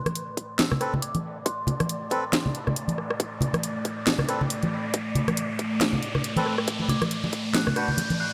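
Deep dubstep with a heavy, meditative mood, this half-time build-up is cut from a longer piece and rides a swung, steady pulse. A dark analog pad holds a moody, detuned Am chord, while an eerie, inharmonic synth bell with chorus and dub echo sounds at the start and returns near the end, a filter sweep running across it the whole time. A reedy, breathy melodica adds dry, close-miked stabs with dub echo, and an airy, wind-like noise texture sits in the background. Up front, a garage drum kit with a cracking snare, rim clicks and hats enters alongside damped congas played with soft hands, and a tight, layered electronic kick joins them shortly after. An electronic riser enters at 1.1 seconds and runs to the end, the harmony dropping away at 6.7 seconds, all set in a moderate echo-chamber reverb.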